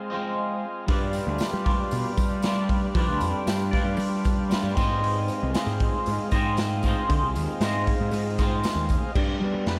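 Dark and mysterious, this psychedelic rock excerpt in G phrygian dominant moves at 116 BPM in a straight 4/4, opening with a mellow vintage combo organ holding sustained chords under a twangy, phaser-treated, double-tracked guitar riff before a fuzzy, overdriven picked bass and a gritty, saturated garage drum kit with dark cymbals and a punchy kick enter at 0.9 seconds, a jingly tambourine sits in the background, and the whole dreamy mix is soaked in a huge ambient reverb over chords moving from Fm7/Ab to G7 and Fm7.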